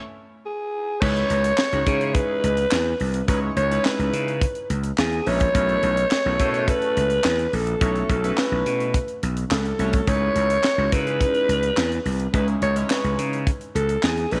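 A breathy, raspy alto saxophone with vibrato carries the melody of this slick, late-night early-eighties boogie funk clip in C# minor, sounding alone from 0.5 seconds until the band drops in at 1.0 seconds at 106 BPM. A growly, overdriven slap bass and a tight funk kit with a high-tuned snare, handclaps, hi-hat and crash sit up front, while a glossy, chorused polysynth with phaser and a filter sweep holds sustained accompaniment underneath. The harmony moves from C#m9 to B9sus4 at 5.5 seconds and back to C#m9, set in a light studio reverb.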